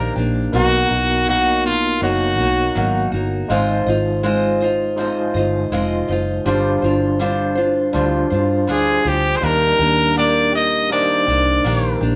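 A straight, unhurried 4/4 pulse at 81 BPM sets a laid-back, nostalgic indie pop mood in Eb major, in this short cut from a longer piece. A brilliant, punchy trumpet carries the melody up front with a light vibrato, sounding from 0.0 to 3.1 seconds and returning at 8.7 seconds. Beneath it, an overdriven tine electric piano sounds barky and gritty through a combo amp, shimmering with fast tremolo, while a picked steel-string acoustic guitar sits warm and up front with a warbly pitch drift. A vintage foam-muted fingered electric bass supplies a dark, round low end throughout. The harmony moves from Ebmaj7 through Bmaj7, Ab6 and G7sus4 before settling back on Ebmaj7, and the band sounds as if playing live together in one room, bathed in a wet, large studio reverb.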